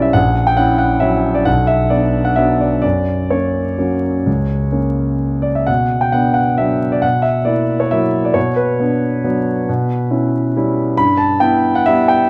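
A classical piano waltz in 3/4, this brief fragment of a longer piece unfolds with a wistful, bittersweet mood and a supple rubato feel, its harmony moving between B minor and F-sharp chords before settling on Em/G near 11.0 seconds. A solo concert grand carries everything from low A#1 to B5, its clear tone, deep bass and long sustain sitting up front. Close, detailed miking and light reverb frame the instrument, with a layer of vinyl crackle beneath.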